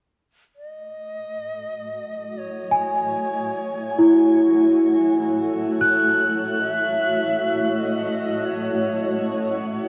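Luminous and weightless, this ambient piece drifts at a slow 50 BPM in A lydian, heard as a brief cut from a longer work. A reedy, airy shakuhachi carries the melody from 0.6 seconds, fading in from a distant place with gentle vibrato and a soft attack, its bamboo breath trailed by tape echo. At 1.8 seconds a granular cloud pad joins with blurred, evolving sustained chords, its sine-like tone colored by built-in reverb and tremolo. A large celesta enters at 2.7 seconds, up front and ringing, spinning bell-like arpeggios that feel sweet yet dark, also carried on tape echo. The whole is bathed in a shimmering reverb with a long 8.2-second tail, and the worn cassette sound adds a warbling pitch drift that gives the music a hazy, aged glow.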